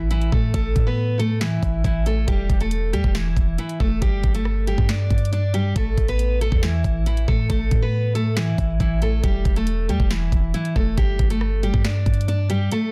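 Eerie and hard-hitting, this half-time trap excerpt sets a bright, full-bodied picked steel-string acoustic guitar melody, heard through a low-pass filter and moving over A5, Em and G5 chords, atop a deep, boomy, sine-like 808-style bass and an up-front electronic trap kit of knocking kick, sharp snare, rim click and hi-hats, in a dry, dense, heavily limited mix where the kick cuts out at 12.7 seconds.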